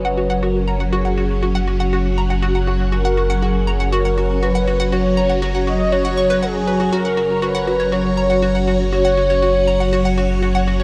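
This ambient, sequencer-driven space music in F# major moves at 120 BPM in a straight 4/4, with an expansive, luminous mood, and is cut from a longer piece that rests on a single F# chord. A full string machine ensemble sits up front with sustained chords, its vintage sawtooth tone softened at the attack and coloured by phaser and ensemble chorus. A hollow, bouncy square-wave pluck plays a bright, detuned riff through lush chorus and analog delay, while a deep, round sine sub bass holds F#1 beneath. A mellow, horn-like synth lead carries the melody with a soft attack and vibrato, treated with chorus and analog delay, and stops at 9.9 s while the other parts continue to 10.8 s. A wet plate reverb with a 2.7-second decay gives the sound its spacious glow.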